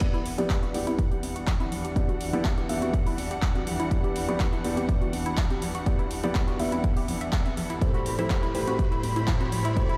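Bittersweet and driving, this progressive house build-up at 123 BPM in E minor moves from Em7 to Am7 at 7.8 seconds, with veiled, con sordino strings holding sustained chords and a felt-muted upright piano playing soft stabs, both pumping against a punchy, up-front electronic kick, while a glassy wavetable pluck arpeggiates with chorus and tape echo, filter sweeps run across the pluck and the piano, handclaps and metallic hi-hats, very quiet congas and a faint riser fill out the groove, and a stone room reverb surrounds it all in a short cut from a longer piece.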